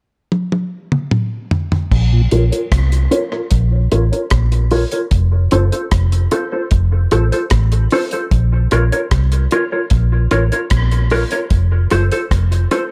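A dark studio sound with reverb carries this deep, hypnotic dub reggae excerpt in Bb harmonic minor at 75 BPM, where a tight-kicked drum kit opens with a fill from 0.3 s, a round, foam-muted electric bass enters up front at 1.9 s as a filter sweep begins and the chords move between Bbm and F, a flute-like tonewheel organ with slow rotary speaker and tape echo flickers briefly in the background, and a clean, compressed electric guitar with analog chorus and tape echo plays from 2.3 s to the end.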